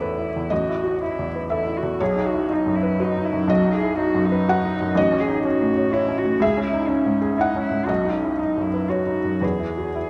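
Reflective and fragile, this neoclassical excerpt for piano and strings moves in a rubato 3/4 at 121 BPM. A felt-muted upright piano sits up front as the accompaniment, intimate and mellow, with thin felt and audible action noise, spanning A1 to F#5 through chords that drift from Asus2 to B, F#m/A and C#m, then back to B before settling on Eadd9. A single con sordino cello, bowed with light vibrato and a dark, veiled tone, adds a quieter second line between C#4 and G#4, and both parts sit in a moderate scoring-stage reverb.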